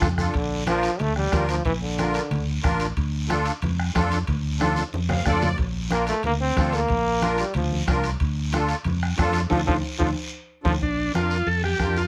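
Driving and danceable, this cumbia fragment puts a bright trombone solo with light vibrato up front over a shimmering musette accordion, a dark, round fingered electric bass, and a background of soft-beater bombo, low-tuned congas, metal-shell timbales and a raspy, distant guiro, all moving between Bb and Dm, until a band accent and drum fill hand the melody at 10.8 seconds to a vintage, reedy combo organ with heavy vibrato and plate reverb.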